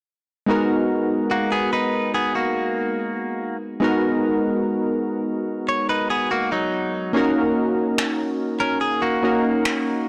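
Longing and sensual, this slow contemporary R&B fragment at 72 BPM in G# minor opens with round, detuned analog keys treated with chorus, joined at 1.3 seconds by bright, twangy clean electric guitar arpeggios trailed by delay, while electronic finger snaps with a softly clipped edge arrive only at 8.0 seconds, all within a light reverb and a blown-out, overdriven mix that drifts from G#m7 to D#m7.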